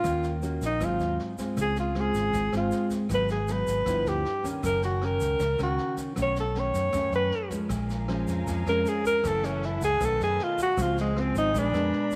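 A straight 4/4 bossa nova at 156 BPM in Db major, this breezy, sophisticated excerpt rides on a brushed drum kit with a boomy kick, rim click and snare, a grainy egg shaker in the background, a dark, round fingered electric bass, and a thumb-plucked classical nylon-string guitar moving through rich jazz chords such as Dbmaj7, Cb9 and Bb7b9. Up front, a breathy alto saxophone with vibrato, scooped notes and a smooth top takes a jazz solo from 1.6 s. At 7.7 s a veiled, con sordino string section enters at a distance with lush bowed chords, all set in a moderate echo chamber reverb.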